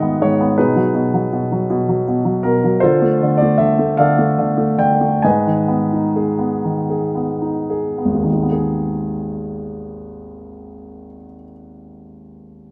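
Classical solo piano in a lyrical, dark and melancholic vein, this 12.7-second excerpt from a longer piece unfolds in G# minor and 6/8 at a rubato 34-54 BPM counted in dotted quarters, easing into a slowdown from 2.8 to 8.3 seconds. A warm, up-front baby grand spans G#1 to G#5, moving from G#m7 and B6 through a shadowy Dm before settling on G#m, then turning to a contrasting passage at 8.3 seconds. Light reverb lends the intimate sound a gentle sense of space, and the instrument is tuned slightly high to A4 = 443 Hz.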